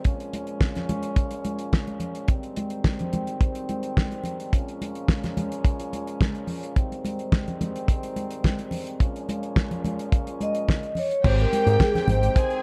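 Glamorous and sultry, this short disco excerpt moves at 107 BPM in a straight 4/4, in Bb dorian, with a dark production and a light studio reverb. A damped 70s drum kit sits up front with a dry, fat snare, a tight kick, hi-hat and crash, while close congas with a thick skin add percussion from the start. A mellow, roomy French horn section holds sustained chords in the distance, trading Bbm7 and Abmaj7 throughout. Near the end, a vibraphone played with soft mallets brings a ringing, metallic melody from 10.4 seconds, shimmering with a slow motor vibrato. At 11.2 seconds a woody symphonic string section enters with a lush, bowed second line touched by tape echo, and a round, amped electric bass, picked through an envelope filter, takes the low end up front.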